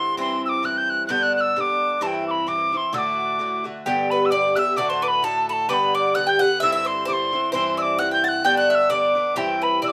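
A reedy wooden whistle with a crisp chiff and vibrato carries the melody up front from the start, over the picked double strings of an Irish bouzouki with a metallic ring, in a lively, rollicking Celtic polka at 131 BPM in 2/4 with a light swing. At 3.9 s a bright, woody mandolin joins with a second line as the tune comes around again, moving through simple changes on C, G and D. A moderate small-room reverb frames this short excerpt from a longer piece.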